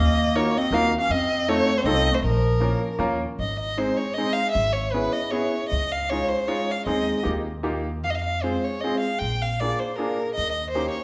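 A wet recital-hall reverb surrounds this bittersweet, whirling musette waltz, an excerpt from a longer piece in 3/4 at 156 BPM with a rubato feel, moving from Bb harmonic minor to Ab major at 3.4 s. An expressive bowed violin carries the melody up front with vibrato, portamento and a soft attack, while a warm solo clarinet in classical style adds a second line until 3.0 s. A brilliant, intimate upright piano with audible action noise and long sustain accompanies from 0.4 s, and a warm pizzicato upright bass with a woody steel-string tone holds the low end.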